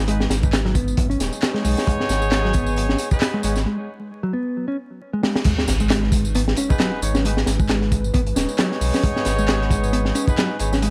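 A detuned analog pad with slow-attack chorus and sidechain pumping hums beneath a deep, saturated sub bass as a crunchy, tightly kicked breakbeat kit with a high-tuned snare, tape-tinged tambourine and handclaps, a gritty picked electric bass riff with analog delay and jazzy horn stabs drive this funky, energetic swung breaks cut, pausing for a break from 3.7 to 5.5 seconds before a faint sub drop lands with the drop at 5.5 seconds, all wrapped in an echo-heavy mix dusted with vinyl crackle.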